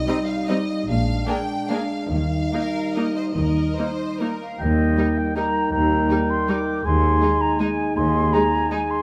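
Classical and sweeping in an elegant, rubato 3/4, this short cut from a longer orchestral piece opens with a smooth violin melody over mellow, close-miked French horn chords, a clear, distant second violin line, rich violas, and focused cellos with expressive double basses entering at 0.9 seconds, before an airy concert flute joins at 4.4 seconds and a dark clarinet and light-vibrato oboe add their own lines at 4.6 seconds, all carried by a moderate concert hall reverb.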